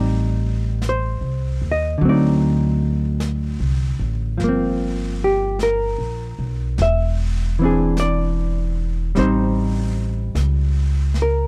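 A smoky, melancholic jazz ballad excerpt with a gentle swing, built on a minor-leaning progression that moves from Am7b5 through D7b9, Gm7 and E7b13 before returning to Am7b5. A dark, clean hollow-body electric guitar, fingered and up front, carries the accompaniment beside a woody pizzicato upright bass, also close and prominent, while a brushed drum kit of snare and hi-hat joins at 0.8 seconds, sitting far back in the mix. The sound is dry and intimate, like a close 1970s studio session with little reverb.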